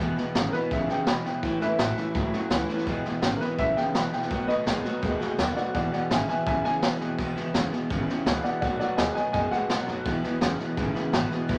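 A light reverb surrounds this retro, upbeat rockabilly clip, cut from a longer piece and moving in a straight four. Up front, an electric guitar through a small old amp plays a twangy, slightly broken-up riff coloured by vibrato. The raw garage drum kit enters at 0.2 seconds, its punchy kick, medium-tuned snare and hi-hat sounding gritty and saturated, with a rolled-off top and the feel of a small room. A dark upright piano carries the melody from 0.5 to 9.9 seconds, its mellow, woody tone slightly detuned. In the background, a bright, full-bodied steel-string acoustic guitar picks out the accompaniment with audible finger squeak, while a pizzicato upright bass on gut strings adds a thumpy low end beneath chords of E, A and B7.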